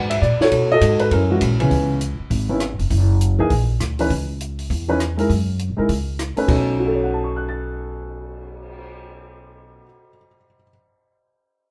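A woody upright piano carries the melody up front across a broad range, joined by a growly pizzicato upright bass with a steel-string bite and a compact cocktail drum kit with dark cymbals, a high-tuned snare and a punchy kick, in a relaxed, swinging jazz piano trio excerpt cut from a longer piece, set in a moderate club reverb heard from further back in the room, with the drums stopping at 8.8 seconds, the bass at 9.8 seconds and the piano carrying on alone until 10.7 seconds.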